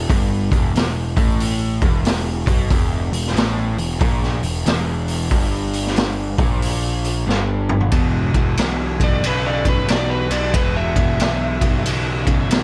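An overdriven slide guitar, played with fingerpicks, arrives at 9.0 s with a warm, high-register melody over this swaggering, driving excerpt of blues rock power trio and southern rock. Beneath it, a dark, double-tracked semi-hollow guitar, overdriven and picked, churns out a low riff that opens on an E5 chord. The bass is fuzzed and growly, heard direct and amped and sitting up front. A raw garage drum kit, the loudest part, pushes the 92 BPM 4/4 groove with a 64% swing on the eighths; its boomy kick, high-tuned snare, hi-hat, ride and toms sound saturated and gritty with a rolled-off top. A drum fill from 7.3 to 7.9 s leads into the second section, where the slide solo unfolds over the band, all set in light reverb with tuning pitched to A4 = 445 Hz.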